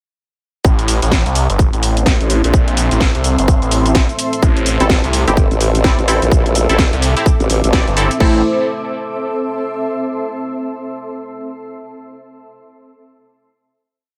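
Swaggering and bouncy, this short bass house piece in A minor runs at 127 BPM with a swung sixteenth feel, opening its drop at 0.6 seconds as a tight, up-front electronic kick and a garage kit of cracking snare, bright hats, cabasa and crash set up a four-on-the-floor groove. A thick, swirling phased saw bass with overdrive and sidechain pumping plays chopped phrases, and a cloudy granular pad drifts in with slowly shifting chords at 1.9 seconds. Later the bass is joined by a very quiet, dark analog pad, then by a wobbling formant-sweep bass with chorus and nasal band-passed chord stabs with delay. The drop gives way at 8.2 seconds to a final chord held by the blurred granular pad, set in a light digital ambience.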